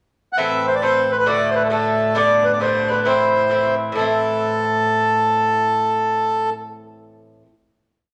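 This is a complete Celtic folk polka in A dorian, dark yet lively and driving, moving at 134 BPM in 2/4 with a swung eighth-note lilt. The reedy, close-miked accordion carries the melody up front, dry and full, opening with a brief pickup before shaping its tune from short motifs in balanced, period-style phrases. Beneath it, an acoustic Irish bouzouki strums steady eighths on open chord shapes, its picked double strings giving a metallic ring. A single bowed cello holds a low A drone, earthy and biting with a smooth top, sitting quietly at the bottom of the mix. The harmony moves from Amadd9 through D and G back to Am, and after one short section the tune settles onto a final chord at 3.9 seconds. The accordion and cello fade out around 6.5 seconds, and the bouzouki rings on alone until 7.5 seconds inside a large, wet studio reverb.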